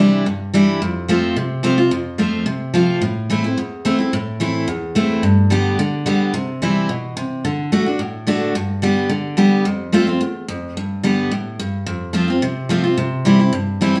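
A picked steel-string dreadnought acoustic guitar, full-bodied and up front with audible finger squeak, plays alone through this virtuosic, driving bluegrass excerpt in C major at 217 BPM, moving from Cadd9 through F, Am and G before a second section touches D and closes back on C, all set in a wet studio reverb that evokes a band playing live in one room.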